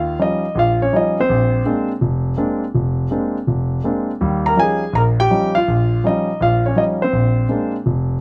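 Close, detailed microphones and a light reverb put a concert grand piano up front, its tone polished and present with a deep bass and short sustain. This brief excerpt of solo jazz has a playful, relaxed mood, moving at a brisk swing in 4/4 with a lilting eighth-note feel. The piano carries the whole 8.2 seconds alone, ranging from F1 up to Bb5. Its harmony alternates between Eb9 and Bb9 chords, returning to Bb9 at 7.1 seconds. The instrument is tuned to A4 = 436 Hz, a shade beneath standard concert pitch, and its timbre is warm.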